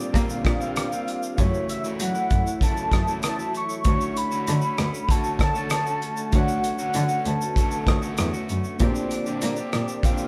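A moderate stone room reverb surrounds this short cut from a longer piece, with the band heard playing live together in one space. It is dreamy, nostalgic indie and bedroom pop in D major at 97 BPM in a straight 4/4, moving through Bb69, F#m7 and Dmaj7 chords before returning to Bb69 at 8.8 seconds. A velvety synth lead carries the melody with a soft attack, detuned unison and chorus, floating over a slightly broken-up, twangy picked electric guitar whose pitch drifts in a warbly way. Behind them sit a worn, slightly out-of-tune tine electric piano and a silky string machine holding sustained chords with a slow attack and ensemble chorus. A cloth-damped, thuddy acoustic drum kit sits up front with a tight kick, rim clicks, hi-hat and shaker and a rolled-off top, while a dark, woody bowed cello with vibrato plays the bass line from 0.1 to 9.8 seconds, sounding distant.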